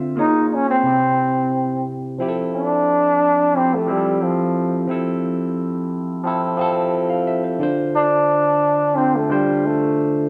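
A clear, punchy trombone with light vibrato and scooped notes carries the melody and takes a pop-style solo from 2.2 s, over a barky, bright tine electric piano, lightly overdriven through a combo amp with phaser, in this lush 89 BPM soul cut in F major that moves from Bbm7 and C to Fmaj7 and Dm7, played live by the band in a stone room with a wet reverb.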